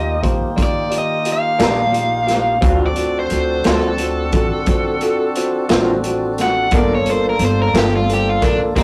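The excerpt opens with an overdriven electric guitar carrying the melody up front over a bright, bell-like tine electric piano, a lightly overdriven tonewheel organ holding full, vibrato-tinged sustained chords, and a woody, thumpy upright bass plucked pizzicato. A raw garage drum kit joins at 0.2 seconds, its punchy kick, medium-tuned snare and hi-hat sounding gritty and pumping in a small room with a rolled-off top. At 1.6 seconds a second electric guitar enters in the background through a small old amp, slightly broken-up, lo-fi and compressed, with a tremolo effect. This is a slow blues in G minor at 59 BPM in 12/8 with a straight feel, its soulful, smoky mood moving from Ebmaj7 to D7#9 and settling on Gm7. The whole take has the rough character of a rehearsal-room recording, with moderate small-room reverb and saturation.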